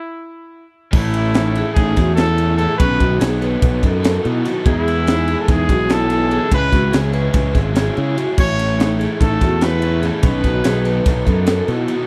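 Driving 9/8 eighths frame this wistful, intricate math rock and midwest emo fragment, where a distant, roomy trumpet with tape echo sings the melody alone until the overdriven, double-tracked electric guitar riff, the gritty, saturated fusion kit with its high-tuned snare and punchy kick, and the up-front fuzz bass crash in at 0.9 s, joined at 1.3 s by ringing, metallic vibraphone arpeggios with fast motor vibrato over jazzy major-seventh and dominant chords.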